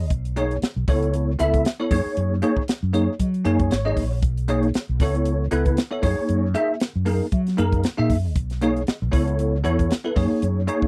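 A bell-like tine electric piano and a fretless electric bass open this bright, funky stretch of electric jazz fusion, with a crisp drum kit joining at 0.1 s. The groove sits at 116 BPM in 4/4, with a light swing on the sixteenths. The electric piano carries the accompaniment with a clean, direct tone and an ensemble chorus, cycling through Bmaj9, Aadd9/C# and F#add9 (F#9 on the second pass), and it plays a short fill from 3.2 to 4.2 s. Beneath it, the fretless bass adds a warm, amped low end touched by subtle chorus. The drums use hi-hat, a punchy kick and a medium-tuned snare, sounding airy and polished in a studio room. All three parts sit up front in a dry, close 1970s-style studio sound, and the clip ends at 10.9 s as a cut from a longer piece.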